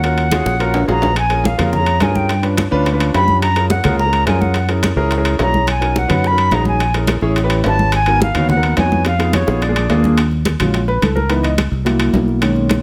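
A straight 4/4 Afro-Cuban jazz groove sets a fiery, sultry tone, anchored by a round, punchy fingered electric bass up front, ringing congas in the background, tight high-tuned bongos kept very quiet, and compressed, saturated metal-shell timbales, with drum fills arriving near 0.3 and 9.1 seconds. A reedy silver concert flute with vibrato, a soft attack and rolled-off highs carries the melody through plate reverb while a warm, intimate concert grand piano, its action noise audible and its sustain long, comps through rich extended chords. The flute drops out at 10.0 seconds, and the piano takes a solo from 10.2 seconds until this fragment of a longer piece cuts off.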